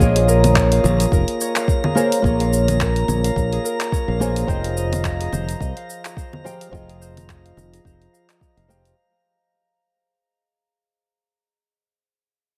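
Lightly reverberant and fading out from the start, this wistful, smooth sunset chillout fragment pairs a woody, fingerpicked nylon-string guitar and a growly, up-front fingered electric bass with a soft electronic kick and a produced R&B kit of congas, handclaps, warm hats and shaker, while a glassy, drifting harmonics texture hovers above and a ringing concert harp plays echoed arpeggios through a filter sweep, lingering alone from 9.0 s until 10.7 s.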